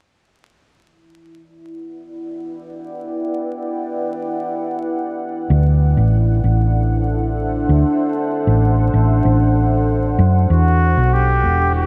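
An ambient dub excerpt opens on a deep, detuned sawtooth pad with a sub octave, its slow-attack chords softened by chorus and reverb over a bed of vinyl crackle, moving from Em7 to D7 in a meditative, deep mood. At 5.5 seconds a round, amped hollow-body electric bass joins up front, and at 10.5 seconds a veiled trumpet with a bucket mute enters as the melody soloist, its mellow, soft-edged phrases trailing dub echo as the harmony returns to Em7.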